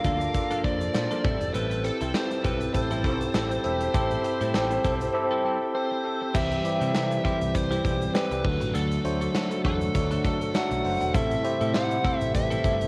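Romantic and glossy, this 1980s-style pop clip, cut from a longer piece, moves at an easy pace with a light swing on the sixteenths. A dark, smooth overdriven lead guitar carries the melody throughout, while an up-front tine electric piano plays the accompaniment and a compressed, picked clean electric guitar with analog chorus repeats a riff in the background. Behind them, a soft-attack organ-string ensemble with a vintage, chorused sheen holds sustained chords. A big rock drum kit with a punchy kick, medium-tuned snare, hi-hat, crash and tambourine sounds mid-forward and rolled-off on top, joined by a grainy, distant egg shaker that sits very quietly, while an overdriven picked electric bass adds a warm, amped low end. The harmony moves from Bbmaj7 and Am7 into a second section at 6.3 seconds built on C, D and Am7, and a moderate spring reverb and the character of a home cassette recording lend the whole a nostalgic softness.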